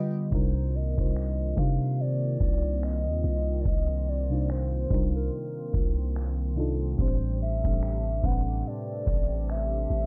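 A bright, plucked qanun note with digital delay glints in the background for the first 0.7 seconds beside a round, dark FM electric piano with chorus and phaser, opening this sensual, longing, swung contemporary R&B excerpt, where a smooth, evolving analog pad with sidechain pumping, a hollow, woody clarinet-like synth lead with vibrato, and an up-front pairing of sine-toned, decaying 808-style bass and booming, tape-flavoured drum machine (finger snaps, metallic hi-hat, deep kick) all sit in a dry, low-pass-filtered mix under a filter sweep as the harmony moves from Cm11 to Am11 at 7.0 seconds.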